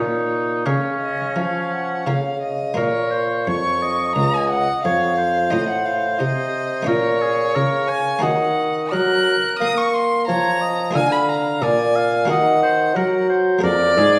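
A grave, introspective baroque-style sonata movement opens with all four parts sounding together from the first moment: violin, oboe, harpsichord and bassoon. Close and up front, the warm, bowed violin carries the melody high above the ensemble, its soft attacks, vibrato and portamento giving the line an expressive, singing quality. Beneath it, a clear oboe with light vibrato plays a second line in a classical style, while a mellow bassoon with a smooth top and light vibrato anchors the bass, also placed up front. The buff-stop harpsichord supplies a plucked, muted, lute-like, dry continuo accompaniment in the Flemish style. The minor-key harmony settles on Bbm before turning through F7/A and onward to Ebm at 8.2 seconds, and a new passage begins at 2.8 seconds and runs until the cut at 14.2 seconds, all heard within the resonant reverb of a recital hall.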